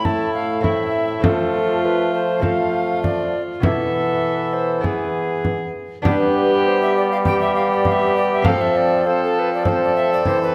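Rustic and courtly, this excerpt of a Renaissance-style consort dance moves at 100 BPM in a straight 4/4, with an airy alto recorder carrying the melody over a gut-string viola's second line, a delicate fingerpicked lute in the background, a brilliant trombone on the bass, a warm bassoon filling the accompaniment, and a close, dry frame drum played with soft hands up front, all set in a moderate recital hall reverb as the chords move from Am through F, Esus4 and E to G and F.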